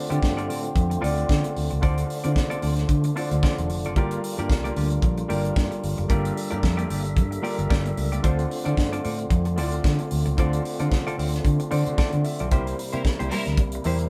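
Lightly reverberant, like a band playing live in one room, this glamorous, sultry disco cut swings gently over Dm7 and Gm7 chords, with a tight funk drum kit up front, its high-tuned snare and tight kick driving alongside a dark, round, foam-muted fingered bass. A concert grand piano with audible action noise and long sustain shares the accompaniment with a clean, compressed semi-hollow electric guitar, while a fat, lightly overdriven tonewheel organ holds sustained chords through a fast rotary speaker, its key click and percussion giving it bite. The piano takes a fill at 11.4 seconds before the harmony moves to C7, and a lush, bowed studio string section adds a brief second line at 12.9 seconds.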